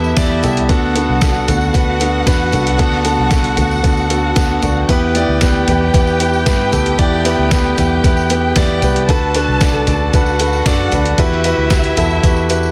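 A concert grand piano opens with a brief fill over an Em chord, joined at once by a lush, distant violin section with vibrato and portamento under a digital delay, a round, foam-muted electric bass and a jingly tambourine in the background. At 0.2 seconds a gritty, pitched-down, tape-warm trip hop drum kit with a thumpy kick, medium-tuned snare, hi-hat and toms drives this dramatic piano pop excerpt forward. The up-front, long-sustaining piano adds a second fill around 3.8 seconds as the harmony moves between Em and D6 before settling on Emadd9, all within a dense, heavily limited mix with light reverb.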